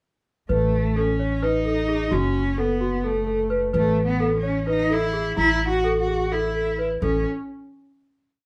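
Cello, celesta and upright bass all enter together at 0.5 s in this short, playful and hopeful contemporary chamber piece, moving in a straight 7/8 at 258 eighths per minute in A lydian. The bowed cello carries an expressive, motif-based melody of arching phrases with vibrato, portamento and a soft attack. Beneath it the bell-like celesta repeats a delicate, sweet arpeggio ostinato, and the woody, thumpy pizzicato bass holds sustained low notes through A, F#m and A5 chords, all set back in a moderate studio room reverb until the parts stop at 7.2 s and the piece closes on a final chord.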